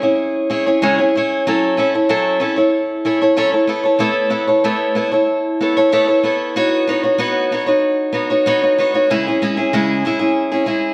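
Light reverb surrounds an up-front, concert-toned steel-string acoustic guitar, heard alone and picked with a slapback echo in this short rock fragment taken from a longer piece. Its hopeful, warm mood moves through C#m, F#m7, Aadd9 and Badd9 in a straight 4/4 feel, spanning C#3 to C#5. At 9.1 s a new passage returns to C#m, closing at 10.9 s.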